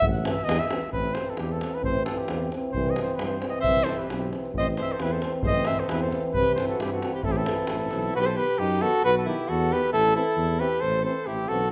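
A warm flugelhorn opens this fiery, virtuosic Balkan brass band fragment at 0.0 seconds, carrying the melody up front with vibrato, a soft attack and a classical poise. It is joined from the start by a mellow tuba on the bass line and a deep, distant davul that sounds as if it sits in a large room. A clear French horn and a roomy euphonium fill in the accompaniment from the background, each with light vibrato. At 3.6 seconds a soprano saxophone adds a punchy second line, smooth at the top and shaded with vibrato. Moving at 133 BPM in a straight 2/4 in A dorian sharp4, the harmony sways between Am and C before shifting to B and back to Am as the davul drops out at 8.1 seconds, all bathed in the reverb of a recital hall.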